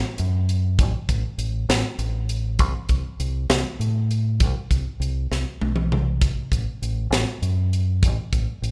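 In a straight 6/8 at 66 BPM, this intricate, playful math rock and midwest emo fragment pairs a crisp, airy fusion drum kit, with its high-tuned snare, tight kick, hi-hat and toms, against a dark, round, punchy fingered electric bass in the A1 to A2 range, both up front from 0.2 s under light reverb, with a drum fill from 5.3 to 6.2 s before the cut.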